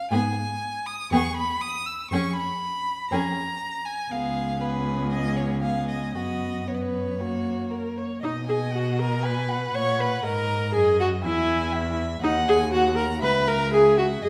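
A moderate recital-hall reverb and a faint mains hum surround this quick, cheerful and graceful classical-period string quartet passage, in which a focused first violin carries the melody over a dark, woody second violin heard at a distance, while an up-front viola plays smooth, even accompaniment and a close, rich cello holds the bass, each part bowed with vibrato.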